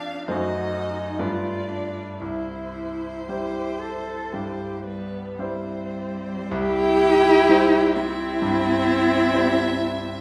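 Lyrical and warm, this slow romantic movement for piano quartet moves with a flexible rubato, its rich, focused violin carrying the melody with vibrato and a smooth top while the cello sings a second line with a soft attack, expressive portamento and a warm tone. A viola and a bright, brilliant grand piano fill out the accompaniment, the viola sitting forward in the balance alongside the cello, as the harmony passes through F#dim7 and G9 before settling on C at 2.2 seconds. The quartet is heard from further back in a recital hall, wrapped in a generous reverberant bloom.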